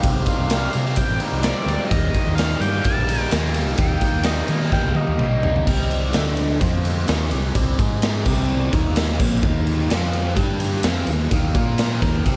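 A straight 4/4 pulse at 128 BPM drives this trippy, hypnotic slice of psychedelic rock, cut from a longer piece. A raw garage drum kit sits up front with a punchy kick, a medium-tuned snare, crash, ride and toms, its saturated, gritty sound ringing in a bright stone room with a pumping ambience, and a drum fill arrives at 4.7 seconds. Beneath it, a fingered electric bass gives a dark, round, amped foundation. A double-tracked fuzz guitar carries the riff up front, picked and distorted with a phaser, moving from Cm to Eb before shifting into a run of power chords. Over the opening stretch, from 0.3 to 5.6 seconds, an overdriven synth lead plays a screaming, guitar-like solo built from sawtooth and pulse waves, sustained with vibrato and coloured by distortion, phaser and delay. Light reverb gives the whole a small-room feel.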